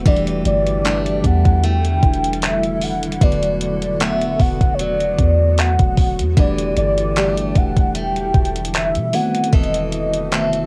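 Contemporary R&B with a moody, longing feel, this cassette-recorded fragment sets a velvety, detuned synth lead carrying the melody over a lush, dreamy FM electric piano with chorus and phaser, bright, boxy picked steel-string acoustic guitar arpeggios through analog delay, a deep, round 808-style bass, a cloudy granular pad pumping softly in the background, and an up-front, thumpy 12-bit drum machine of kick, hi-hat and handclaps, all moving through Em11, Bm7/E and back to Em11 before arriving on B7b9/E at 9.1 seconds.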